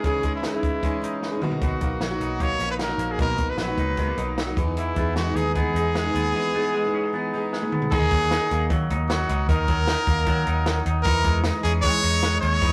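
Jangly indie pop at 152 BPM with a nostalgic, youthful mood, this brief excerpt features a brilliant, close-miked trumpet singing an up-front vibrato melody over twangy clean electric guitar arpeggios, a picked plugged-in steel-string acoustic guitar that drops out at 7.9 seconds, a compact cocktail drum kit with a punchy kick, high-tuned snare and dark cymbals playing fills before 1.6 and 7.9 seconds, and a round, foam-muted vintage electric bass entering at 1.6 seconds, all set in a moderate stone-room reverb with a rough rehearsal-room sound as the chords move from C#madd9 through Bmaj7 and Emaj7 to D#m.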